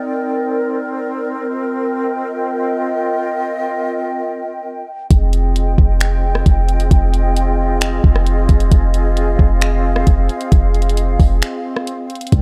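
Hazy and ethereal, this atmospheric cloud-rap cut opens with an airy large flute ensemble alone, holding sustained chords with vibrato and sidechain pumping, drifting from Cm9 to Eb69. At 5.1 seconds a deep, boomy 808-style bass with a fast attack and a soft electronic R&B kit join in a half-time feel, with soft kick, warm hi-hat, finger snaps and rim clicks sitting up front as the harmony moves to Fm9. A brief break arrives at 11.4 seconds, and the whole mix stays dry and dark.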